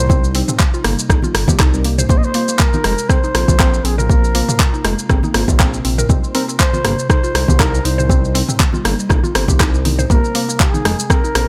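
A bucket-muted trumpet opens this excerpt of earthy, driving afro house at 120 BPM, its dark, raspy jazz solo growling and scooping through dub echo over a woody, warbling FM mallet pluck, a very quiet detuned chord stab with phaser and a moving notch, and a smooth sawtooth bass pumping to the sidechain. From 0.1 s a deep, up-front electronic kick and a tape-toned deep house kit of handclaps, hi-hat, rim click, shaker and toms drive the 16th-note swing, with soft-handed congas saturated in the background. An ethereal, airy pad with slow attack and ensemble chorus sustains beneath the C minor and Bbsus2 chords in a dry, close mix.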